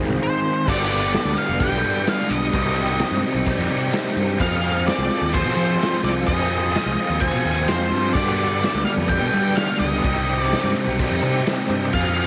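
Mysterious and dark, this brief excerpt of psychedelic rock moves at 128 BPM in G phrygian dominant, with a bright, overdriven, double-tracked garage guitar riff swirling through a rotary speaker alongside a growling, overdriven fingered bass. A fuzzy, distorted lead guitar carries the melody through tape echo from 0.2 seconds, while a raw, punchy drum kit with crash cymbal, kick and snare enters up front at 0.7 seconds. Underneath, a very quiet vintage string machine sustains soft-attack cello chords through Cmadd9 and Fm7, all set in light reverb and studio ambience.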